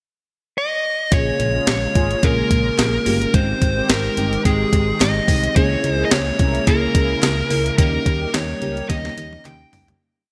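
Bright 1980s-style digital production in a lush hall sets this romantic, uplifting pop piece, where a dark, overdriven lead guitar picks out hook phrases up front from 0.6 s over a thumpy, big-backbeat drum machine, punchy driving FM bass, glassy chorused keys, phased string-machine violas in the background, very quiet brass stabs and crisp handclaps, before a drum fill arrives at 8.9 s as the music fades out.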